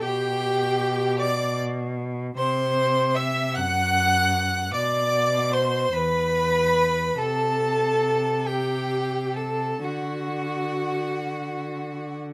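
All four players of a string quartet begin together in this slow, romantic classical movement, which sways gently in 6/8 with a flexible, rubato pulse and a serene, tender mood. The first violin carries the melody high above the group, its clear, smooth tone sung with even vibrato. Beneath it, the second violin's line and the viola's accompaniment share the same middle register, both full-bodied and set slightly back, each bowed evenly with vibrato. The cello sits up front with a rich, close bass line that grounds the harmony as it moves from G/B through C, Bm, E5 and Am/C before arriving on D near 9.8 seconds. Close, detailed microphones and light reverb give the quartet an intimate sound, and the passage, cut from a longer piece, ends at 12.3 seconds.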